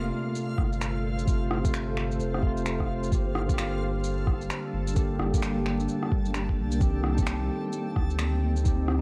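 A light reverb and a layer of vinyl crackle frame this wistful, nocturnal future garage excerpt, cut from a longer piece and moving at 130 BPM in 4/4 with a 62% swing on the sixteenths, in G minor. A bright, clean tine electric piano sits up front as accompaniment, carrying a vintage 12-bit sampler grit and an analog delay, while a cloudy, detuned granular pad holds sustained chords with its own reverb. Beneath them a round sine sub bass anchors the low end, and these three parts all pump against the sidechain. A reversed, swelling texture drifts quietly in the background with a dreamy, bright shimmer. Electronic shaker, rim click and finger snaps, re-recorded in a small room, arrive at 0.4 seconds, followed at 0.6 seconds by a muffled, pitched-down, tape-warm kick that thumps beneath the groove. The harmony moves from F to G minor at 3.1 seconds and on to C minor at 6.8 seconds.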